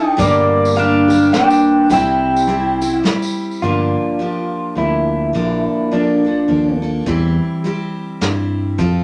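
A haunting, melancholic fragment of swung acoustic folk in 3/4 at 105 BPM and G dorian opens with a slightly broken-up, lo-fi electric guitar melody shimmering with harmonic tremolo, a twangy pedal steel second line with volume swells, and a bright, full-bodied picked acoustic guitar, finger squeak and all. At 0.2 seconds a round, punchy fingered bass, a soft brush kit with a tight kick and a jingly, saturated tambourine join in. The drums drop out at 3.2 seconds and return at 7.1 seconds, as the harmony moves from Gm and C through Gm7 and Bbmaj7 to C/E beneath the up-front guitars, all set in a short, wet studio reverb.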